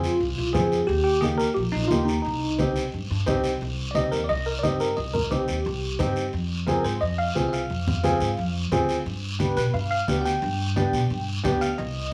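A driving, fiery cumbia groove in straight 4/4 rides on raspy, compressed guiro and thick-skinned, low-tuned congas sitting dry in the background, while a woody pizzicato upright bass and a dark, mellow upright piano with short sustain sit up front. A bell-like, bright tine electric piano carries the melody through a phaser, moving into a clean, direct solo at 3.6 s as the harmony shifts toward harmonic minor and a G7 at 9.1 s. Moderate studio reverb gives this fragment of a longer piece a natural studio ambience.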